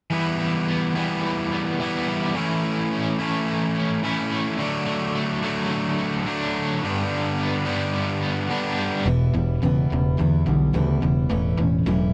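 This rock piece opens at 0.1 s with two overdriven electric guitars playing a riff at 107 BPM in a straight 4/4, setting a driving, brooding mood in E dorian. The cranked stack guitar sits up front with a bright, picked edge. The crunchy guitar runs slightly lower in level, its tremolo adding a shimmering pulse under the main riff. The chords move from Em through A/E and D to G before circling back to Em at 9.1 s. At that point a picked steel-string acoustic guitar enters with warm accompaniment, complete with finger squeak and an auditorium sound, while a punchy, direct electric bass joins up front. The dry, close 1970s-style studio sound carries light reverb, and this fragment of a longer piece ends at 12.1 s.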